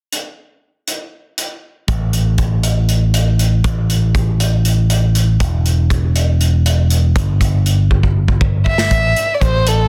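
In a straight 7/8 pulse, this tense, intricate progressive instrumental cut opens on a punchy, up-front studio drum kit of hi-hat, kick and medium-tuned snare in a pumping room, joined at 1.9 seconds by a growly, overdriven picked electric bass low in its register. A drum fill arrives at 7.9 seconds, and at 8.7 seconds a single dark violin enters with an airy, sul tasto bow, soft attack and light vibrato, as the music settles on A minor. The sound is dry, with a dense, heavily limited modern master.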